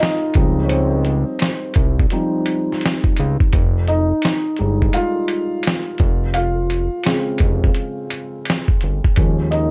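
A soft, felt-muted upright piano carries this nostalgic, reflective lo-fi hip hop excerpt, its mellow, low-pass-filtered tone and audible action noise sitting up front over a swung sampler-style kit with a thumpy kick and gritty 12-bit crunch, while a fat, saturated analog bass joins at 0.4 seconds through chords moving from Dbmaj9#11 to Fm9, all softened by cassette tape and a moderate studio reverb.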